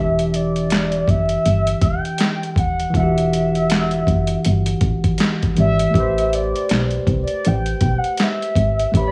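Vinyl crackle and a small-room ambience frame this soulful, introspective neo-soul excerpt in E minor, moving at a relaxed 80 BPM with a swung sixteenth-note feel, shifting from Em9 to Am9 at 5.9 seconds. A worn, slightly out-of-tune tine electric piano plays the chords through its built-in speakers above a round, dark FM bass with a punchy, fast attack and a decaying tone. Dusty, gritty sampler-style drums, overdriven and up front with a thumpy kick, handclaps, hi-hat and snare, enter at 0.2 seconds, while a mellow, horn-like synth lead carries the melody with soft-attack sustained notes, vibrato, a filter sweep, chorus and slapback echo.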